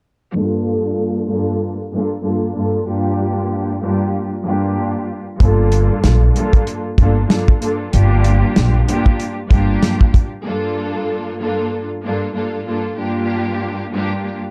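A lush, bowed string section with focused vibrato and a cassette-tape colour carries this reflective, moody boom-bap hip-hop excerpt in G minor at 95 BPM, with a filter sweep running across it from 0.3 to 10.5 seconds as it rocks between Gm9 and Gm7 chords. At 5.4 seconds a woody, growly pizzicato upright bass and a warm soul drum kit with a tight kick, medium-tuned snare and hi-hat arrive up front, lending a swung 16th-note feel. The bass drops out at 9.7 seconds and the drums at 10.3, leaving the strings to carry the closing section of a dark, dry production.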